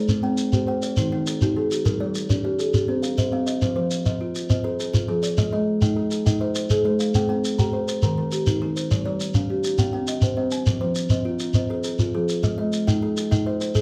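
Rippling and warm, this short cut from a longer piece is a southern African traditional mbira-style interlocking cycle in 12/8 at 136 BPM, in an equiheptatonic F tuning, where two woody, thumb-plucked kalimbas spin short, dark arpeggios together, one of them trailed by tape echo and the other up front, while a grainy, close and dry shekere enters at 0.1 seconds, all heard as a live band in a large studio room with moderate reverb as the chords cycle from C5 through Eb, Gm, Cm, Fm and Ab.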